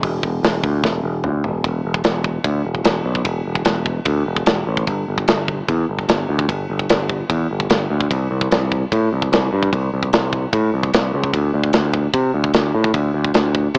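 A growly, overdriven picked electric bass sits up front from the first moment, its punchy, direct tone thickened by transformer saturation as it ranges from deep E1 up to C3 in this dark, epic heavy metal fragment cut from a longer piece. A tight acoustic metal drum kit plays alongside it for the full 13.8 seconds, heard in a studio room with a medium-tuned snare, a tight kick, hi-hat, ride cymbal, toms and bright cymbals sitting mid-forward. After a short opening, a drum fill from 0.8 to 1.6 seconds leads into the main passage, which carries through to the end. A moderate spring reverb adds a lingering tail to the mix. The whole recording has a worn, cassette-like character, with warbly pitch drift and a small-speaker sound that gives the heavy playing a lo-fi, aged feel.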